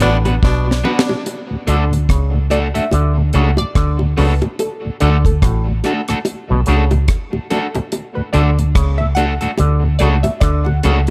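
A nasal, filtered dub chord stab with a sawtooth pluck and phaser takes the solo from 1.3 s in this sunny, uplifting roots reggae excerpt, after a band accent and drum fill open it and a raspy, growling tenor saxophone sounds only until 1.2 s, while a round, foam-muted fingered bass and a dry, up-front drum kit with a high-tuned snare and tight kick anchor a dark, warm small-room mix filled out by a slightly broken-up picked electric guitar with tape echo, a stringy auto-wah clav riff, a lightly overdriven tonewheel organ with slow rotary swirl in the background, and low-tuned bongos struck with hard hands from 0.3 s.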